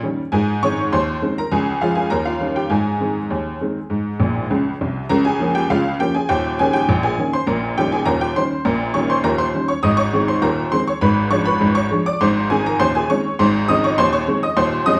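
Ragtime piano in a cheerful, lively 2/4 with a straight feel, played by a solo honky-tonk upright piano that sits up front with a detuned, jangly, vintage brightness and short sustain, ranging from Eb1 to Eb6. A piano fill at 4.2 seconds leads into a new section at 5.1 seconds, where the harmony moves through Bbm/Db, Eb7 and an Abdim7 before settling back on Ab. The piano rings in a large studio with wet reverb, captured live in one room, and the music is cut from a longer piece.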